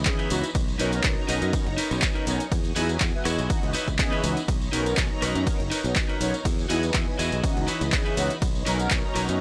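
A dry, gritty hardware sound with little reverb frames this short cut from a longer piece of filtered disco house, sunny and joyful, moving at 122 BPM in 4/4 with a light 16th-note swing in B major. An overdriven, punchy electronic kick sits up front, joined by an analog drum machine supplying handclaps, hi-hat, ride cymbal and rim click, while a compressed tambourine with maracas and group handclaps stays in the background. A bright, growly fingered electric bass with tube saturation anchors the low end, and a slightly broken-up, picked electric guitar plays a riff. Mellow synth brass, round and evolving with detuned sawtooth tone, filter sweep, chorus, phaser and vibrato, fills in the accompaniment, while a lush vintage string machine with sub octave and ensemble chorus holds slow-attack chords behind it. Sidechain pumping breathes through the strings, bass, brass, guitar, hats, cymbals and percussion as the harmony cycles through C#m9, Bmaj9 and Emaj9, and the kick drops out at 9.0 seconds.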